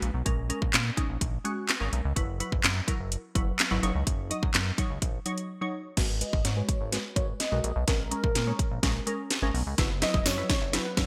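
Bright, 1980s-style digital production with light reverb frames this confident, bittersweet dance-pop piece in G# minor at 126 BPM, where an up-front house drum kit with gated reverb, punchy kick, cracking snare, handclaps, metallic hats and crash cymbal drives a nasal, pulse-width-modulated synth bass and a crystalline wavetable pluck, both pumping with sidechain, until a brief break at 5.5 seconds opens into a build-up with a drum fill and filter sweep as a velvety, detuned synth lead with vibrato and digital delay enters at 6.2 seconds, a lush, very quiet unison pluck adds arpeggios from 9.8 seconds, and a jingly tambourine flickers in the background.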